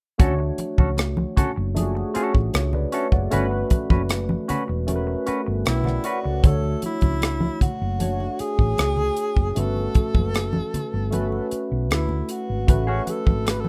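Lush 1970s-style soul with a smooth, romantic mood, cut from a longer piece: a tight, dry funk drum kit with hi-hat, kick and rim click sits up front beside a dark, round hollow-body electric bass, while a barky, lightly overdriven tine electric piano with chorus and plate reverb accompanies over soft-handed congas in the background, a clean, picked semi-hollow guitar plays a riff that drops out at 6.3 seconds and returns at 12.7 seconds, and a breathy, intimate tenor saxophone with vibrato and plate reverb carries the melody from 5.7 seconds, in a rough home-demo mix.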